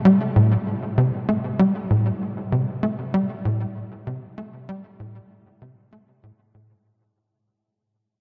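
A tight, nasal sequencer bass carries this dark ambient fragment alone from 0.1 to 6.8 seconds, its sawtooth and square-wave tone shaped by a fast-attack filter pluck that decays, with a subtle chorus and tape echo. Set in A minor at 97 BPM in a straight 4/4, the punchy, up-front line moves between A2 and A3 with a driving, evolving, mysterious character. A huge, wet ambient reverb with a 7.2-second tail gives the warm production an expansive feel, and the whole cut fades out across its length.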